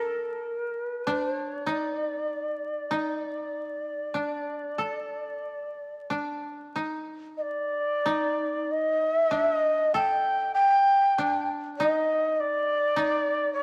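A moderate plate reverb and a vinyl crackle frame this short cut from a longer piece of Japanese chamber music, calm and austere, drifting in rubato at roughly 45-51 BPM in 4/4. Up front, a bright, reedy shakuhachi carries the melody with an airy, tongued chiff and vibrato, while a dry, woody koto, played with fingerpicks, sits lower and softer as a second line. Both play throughout, with the music turning to a new section at 7.4 s before the cut ends at 13.6 s.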